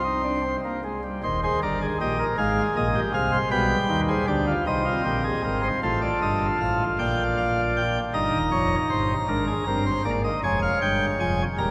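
Moving along in a straight 6/8 at 52 beats per minute, counted in dotted quarters, this lively and elegant baroque-style fugue in C minor unfolds in four voices on a solo chamber organ. The principal chorus sounds full and sits up front, its chamber voicing giving each note a crisp chiff at the onset, and the parts span from the deep register near Eb1 up to Bb5. The harmony moves from C minor through F minor and G major back home to C minor, then opens out around 5.8 seconds into a chain of F7, Bb, Eb7, Ab and finally Db over F. A cathedral reverb with a long 5.8-second decay surrounds the organ, letting each chord hang and blend in the vast space. The piece is cut from a longer work, ending at 11.7 seconds.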